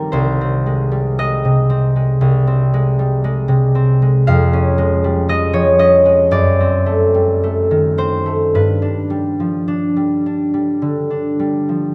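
Mysterious and wistful, this short classical excerpt features a solo concert harp played with a rubato feel, its ringing, fingerpicked tone sitting up front and spanning from C2 to F5. The harmony moves from Ab/C through Db/F and F#dim7 before arriving on G at 8.5 seconds, while a moderate concert hall reverb surrounds the acoustic harp with a sense of space.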